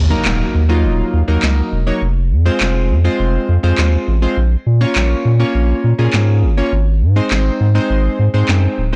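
A blown-out, overdriven mix with little reverb frames this energetic, driving dance-pop excerpt in Bb minor at 102 BPM, moving through Ebm, Fm, Bbm and Ab. A deep, saturated sub bass with a triangle tone sits up front beside glossy, chorused retro synth keys built from pulse and sawtooth waves, whose filter sweeps and decaying notes lend a full-bodied sheen. Electronic handclaps and a punchy analog snare drive the groove from 0.3 seconds, while a very quiet electronic impact marks the opening 2 seconds.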